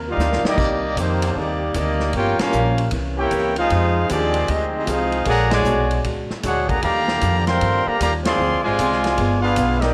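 The sound is worn and warbly, like an old cassette with drifting pitch, set in a moderately large studio reverb. This dramatic, sultry big band swing excerpt in minor opens with a drum fill at 0.2 seconds from an acoustic kit with a punchy kick, a medium-tuned snare, hi-hat, ride and crash cymbals. A close-miked trumpet section carries the melody up front with light vibrato and a soft attack, while a bright, present trombone section plays a second line beneath it. A woody pizzicato upright bass anchors the low end, and a dark, clean hollow-body electric guitar sits in the background with picked, compressed accompaniment. From 1.0 seconds a very quiet, warm trombone section holds sustained chords, and full-band accents punctuate the rich extended harmony.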